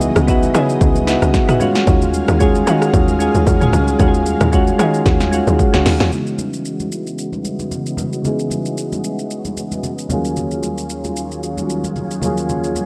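A soulful, late-night amapiano groove opens straight into a drop. Soft, round electric-piano-like synth keys sit up front with a gentle chorus, and a mellow organ-like ensemble string pad holds sustained chords behind them, moving between C#m11 and D#m11. Underneath, a tight, punchy log drum bass with a fast attack and a noisy edge drives the first half, then stops at 6.1 s after a drum fill from 5.1 s. The layered deep house kit, with its deep kick, punchy snare and metallic hats, is overdriven and prominent, while very quiet, bright congas played with soft hands add a thin, saturated shimmer throughout. The whole thing carries light reverb and the warbly pitch drift of a worn cassette tape, and it is cut from a longer piece.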